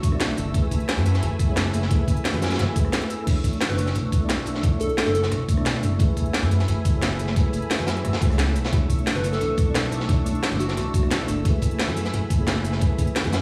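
Dreamy and soulful, this 176 BPM liquid drum and bass in B minor, cut from a longer piece, drifts between Bm11 and F#m11 as a mellow tine electric piano with tape echo and a detuned, chorused analog pad with sidechain pumping carry the harmony, a dark, gliding sawtooth bass sits up front beside a knocking electronic kick, a layered kit with a cracking snare, crisp hats, crash, rim click and shaker drives along with a gritty, saturated, high-passed breakbeat kit, and after a short break at 2.9 seconds a punchy, catchy square-wave unison lead with tape echo and a filter sweep slips in phrases at 3.7 and 9.2 seconds, all played back through a big sound system in a bare stone room.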